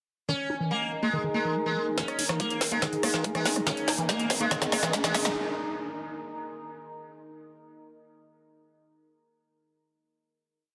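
A dense, heavily limited mix in a moderate plate reverb carries this intense, psychedelic trance piece at 142 BPM, where a buzzing, shimmering sitar riff sits up front over a squelchy, resonant acid bass line with slides, a drone of moving overtones and a deep, moody ambient pad, until the build begins at 2.0 s with an overdriven garage kit of woody snare and metallic hats and a knocking four-on-the-floor kick in the background. A barely audible galloping sequencer bass joins at 2.2 s and a very quiet wobbling formant bass answers in short phrases from 3.0 s, while filter sweeps move over the acid bass and drone and a riser runs from 3.7 s to the close.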